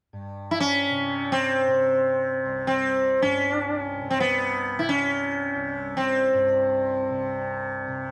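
A softly plucked tanpura opens this serene, meditative excerpt of Indian classical music at 0.1 seconds, its bright drone sitting low between C2 and C3. At 0.5 seconds a sitar enters up front with the melody, moving in free time within a narrow span from B3 to E4. The plectrum-plucked sitar has a round tone, ringing with sympathetic strings above the quieter drone. Both instruments carry a buzzing, shimmering edge, and the tuning sits at A4 = 444 Hz. Light reverb and a dark, warm production hold the sound together until the passage breaks off at 8.1 seconds, cut from a longer performance.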